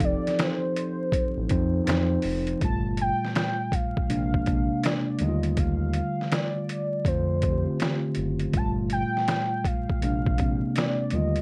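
A velvety, chorused synth lead with vibrato and portamento floats over a mellow tine electric piano tinted by cassette tape, a dark sawtooth-and-triangle synth bass and a gritty, overdriven, pitched-down trip hop sampler kit of thumpy kick, snare, hi-hat and finger snaps in this melancholic, hazy lo-fi hip hop excerpt at 81 BPM in G minor, swung on the 16ths and wrapped in vinyl crackle and moderate studio reverb as the chords move from F7 to Gm9 at 2.6 seconds, then on through Bb9 and Ebmaj9#11.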